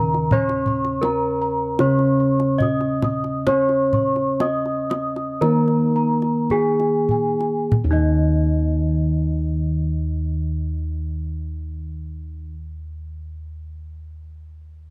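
In a straight 4/4, this serene, shimmering Javanese gamelan excerpt gradually slows from 0.3 to 7.7 seconds, then settles into a new section. A ringing bronze metallophone struck with a wooden mallet carries the melody up front, while a mellow, band-limited metallophone with padded mallets plays the accompaniment beneath it. Above them, an airy, paired-tuned metallophone spins arpeggios full of shimmering beats, round bossed gongs with a beating tone anchor the bass, and a tight kendang played with soft hands drops out at 8.3 seconds, all captured with close, detailed microphones and light reverb.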